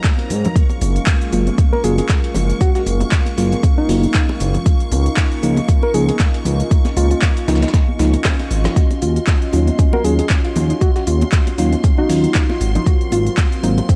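An up-front electronic kick with 12-bit grit anchors this deep, late-night deep house excerpt, joined by a smooth gliding synth bass, a layered deep house kit with woody snare, handclaps and hi-hats, a gritty overdriven soul sampler-style kit with shaker, and ringing high-tuned congas in the background, while a dark analog pad, a nostalgic warbly tape-like pad and shimmering string-machine violins pump under sidechain, a mellow FM electric piano adds full-bodied stabs from 1.3 s, a vibrato-tinged struck synth lead carries the melody through analog delay, and a soft round pluck brings tape-echoed arpeggios from 8.8 s, just after a drum fill.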